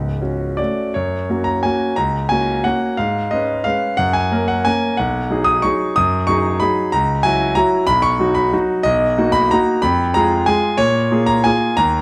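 A rubato waltz in 3/4, drifting between 163 and 197 BPM, this classical solo for clear grand piano feels bittersweet and elegant in F# major, spanning C#1 to F#6 across the 12-second extract from a longer piece. A brief F#m opening gives way to F# at 0.9 s, and the harmony then moves through C#7/G#, B6, Bmaj7 and Fdim before settling on A#m7 at 10.8 s. Close, detailed miking puts the intimate, natural instrument up front with audible action noise, set in a moderate recital hall reverb.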